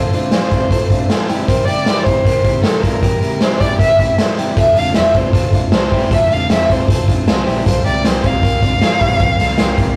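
A straight 4/4 beat from a raw garage drum kit sits up front in this breezy, youthful slice of jangly indie pop, its punchy kick, medium-tuned snare and hi-hat carrying a gritty, saturated character with a rolled-off top. Over it, a single dark violin carries the melody, bowed close and sul tasto with vibrato for a woody, intimate voice. Behind the violin, a full-bodied fingerpicked steel-string dreadnought guitar provides accompaniment while a clean, compressed twelve-string electric guitar adds bright picked arpeggios, both sitting in the background. A round, foam-muted electric bass enters at 4.6 seconds, amped and low in the mix. The harmony moves between Fmaj7 and C7/F before settling on C7sus4, and the whole recording has the rough feel of a rehearsal room, with warm saturation and moderate reverb.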